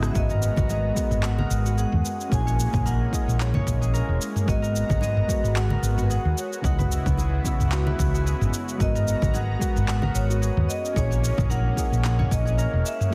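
A relaxed 4/4 groove with a gentle swing on the sixteenths carries this sunset chillout excerpt, opening on a drum fill at 0.0 s. A tape-warm R&B kit of handclaps, rim click, shaker and toms pairs with a punchy, overdriven electronic kick in the background, while close, dry congas ring behind them from 0.6 s. Up front, a dark, round fretless bass with a hollow-body tone anchors the harmony as it moves through G#m9, A#m7b5 and C#m11. A lush, detuned sawtooth pad with warbling chorus holds sustained chords beneath mellow, sine-like electric-piano keys, and a fingerpicked concert harp adds arpeggios bathed in delay and shimmer reverb. On top, a smooth, metallic vibraphone struck with medium hard mallets, motor off, carries the melody through echoing delay and a glistening reverb tail.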